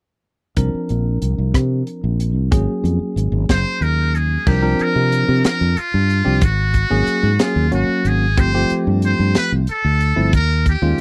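A dry, close 1970s-style studio sound frames this driving, slick passage of electric jazz fusion in 6/8, cut from a longer piece. A tight funk kit with a high-tuned snare and a warm, up-front fretless bass anchor the groove beneath a clean, bell-like tine electric piano voicing suspended ninth chords. At 3.5 seconds a trumpet with a metal mute takes the melody, buzzy and thin with a light vibrato, in a jazz solo style.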